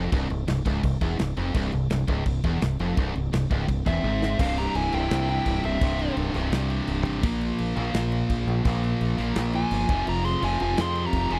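The dry, close sound of a 1970s-style studio recording, with little reverb, frames this aggressive, heavy metal excerpt, cut from a longer piece. Two picked rhythm guitars drive the riff in a low register: a high-gain one sits up front, while a compressed, distorted partner stays in the background. An overdriven, growling fingered bass is also pushed forward, and a polished acoustic kit adds a punchy kick, a medium-tuned snare, toms and crash cymbal in an airy studio room. At 3.9 seconds a dark, smooth overdriven lead guitar enters high above the riff, shadowed by a quieter high-gain second line in the background. A drum fill then opens a half-time passage at 4.4 seconds, moving from C through Bb5, and both leads return at about 9.6 seconds over an Fm chord.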